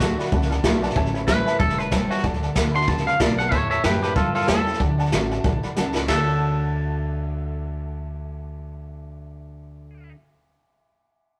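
Rockabilly at a brisk 187 BPM in D major, this rollicking, retro excerpt swings along as a twangy, clean electric guitar carries the melody up front over a jangly, detuned honky-tonk upright piano and a bright, full-bodied picked acoustic guitar set in the background. A woody, thumpy pizzicato upright bass anchors the D and A7 changes, while a brushed jazz kit with dark cymbals and a boomy kick plays a fill at 5.8 seconds and drops out at 6.2 seconds. The rough rehearsal-room sound sits in a moderate stone-room reverb, and the piece is cut from a longer performance.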